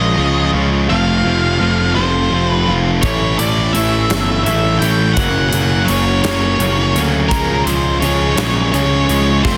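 A straight 6/8 pulse drives this restless, cathartic quiet-loud alternative rock excerpt, where a growly fuzz bass and a distorted, picked rhythm guitar sit up front beneath a dark octave-fuzz lead melody, while a bright, clean twelve-string electric guitar spins very quiet arpeggios. The huge arena drum kit, with its punchy kick, medium-tuned snare and hi-hat, enters at 3.0 seconds and rings out in a hall-like space. Moving through C#, F, A and F# before returning to C#, the mix is dense and heavily limited with a modern studio reverb sheen.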